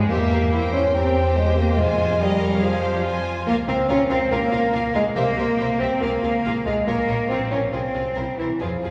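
A mellow, present bassoon sits up front in this restless, dramatic classical-period orchestral movement in F minor at a quick 142 BPM with a rubato feel, over lush violins carrying the melody and an expressive second violin line set in the background, focused violas, clear and distant cellos, smooth double basses, and very quiet, articulate timpani strokes at 1.8 s and 5.2 s, all within a wet concert-hall reverb heard from further back in the room.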